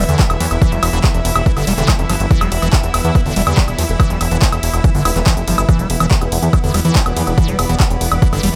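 Psychedelic trance in a straight 4/4 drive, this short cut from a longer piece feels intense and hallucinatory from the first beat. A punchy electronic kick sits up front, layered with a big-room dance kit of handclaps, crisp hats, ride cymbal and woodblock, both re-recorded in a small room. Beneath them a fat, saturated analog bass with a detuned, nasal sawtooth edge plucks and sustains through the low end, while a squelchy, resonant acid bass riff runs in the background through phaser and tape echo. A bubbling texture of randomly stepping filters holds sustained chords with chorus and its own reverb, and a rich bowed string ensemble with light vibrato adds a smooth upper layer, both breathing with sidechain pumping alongside the acid line. From 2.8 to 6.7 seconds a very quiet, dark wobble bass slips in as a second line, its formant filter giving it a vowel-like, wobbling voice. The overall mix is loud and dry, with little room sound.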